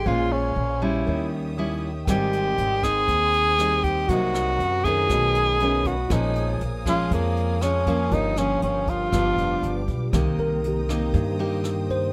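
Intimate and smooth, this bossa nova moves at 119 BPM in a straight 4/4, heard as a short cut from a longer piece. A breathy tenor saxophone carries the melody up front, mellow and whispered, with soft attacks, scooped notes and vibrato, until it drops out at 9.9 seconds. Beneath it, a fingerpicked nylon-string guitar sounds full-bodied and fresh-stringed, with the occasional finger squeak, while a woody, dark pizzicato upright bass anchors the low end. A worn, slightly out-of-tune tine electric piano, lightly overdriven and set in the background, adds a brief fill early on and takes a short solo from 10.1 seconds, as a lush, bowed violin section holds sustained chords behind everything else. Brushed drums arrive at 2.1 seconds with hi-hat, rim clicks and a boomy kick in a small, natural room. The harmony moves through rich jazz chords such as Bbm7, Eb7b9 and Abmaj7, and the close, detailed recording carries little reverb.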